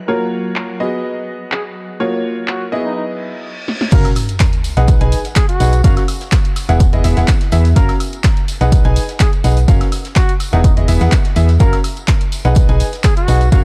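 Piano house at 125 BPM in F# major, uplifting and euphoric, with a light swing and a dark, warm production. A bright, worn grand piano riff runs throughout with sidechain pumping and tape echo, while a dark, vintage trumpet carries a solo melody in classical style, also touched by tape echo. Shimmering sawtooth string-machine violins hold soft-attack sustained chords with ensemble chorus and 12-bit sampler grit until 3.4 seconds, and a punchy analog drum machine with filtered hats, snare, claps, crash, tambourine and woodblock enters at 0.6 seconds and carries on through the end. A reverse cymbal and sub drop rise from 3.2 seconds into the drop at 3.9 seconds, where a round, up-front FM bass with pumping and a punchy electronic kick arrive. A very quiet acoustic studio kit and a faint tambourine with shaker and group handclaps add texture beneath the chords cycling through F#maj7, B6 and E.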